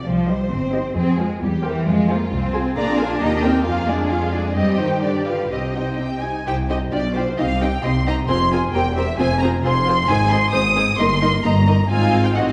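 The first violins and cellos begin together at once, joined by the double basses at 0.1 s and the second violins and violas at 0.3 s, in a quick, cheerful classical-period movement for string orchestra in C minor. The tempo sits around 133 BPM in 2/4, handled with an expressive rubato. The first violins carry the melody with a rich, lush tone, vibrato and sliding portamento, set up front. The second violins add a smooth-topped second line with soft attacks. The violas fill in the accompaniment with close, expressive bowing and their own portamento, while the cellos give the bass a warm, close foundation and the double basses add a clear, even, more distant bottom with light vibrato. The harmony moves through C minor, F minor, B-flat seven and E-flat before a G7 cadence, and the opening idea returns at 6.5 s, all heard through the lingering reverb of a recital hall in this lively fragment of a longer piece.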